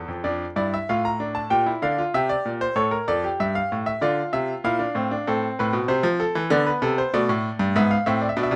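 Classical baroque-style three-part fugue for solo grand piano, driving yet contemplative, cut from a longer piece and lasting about 8.6 seconds. The piano sounds brilliant and polished, with short sustain and an up-front presence, its lines spanning from the low register to the upper treble. Close, detailed miking and light reverb keep every voice clear as the harmony moves through minor chords and dominant sevenths.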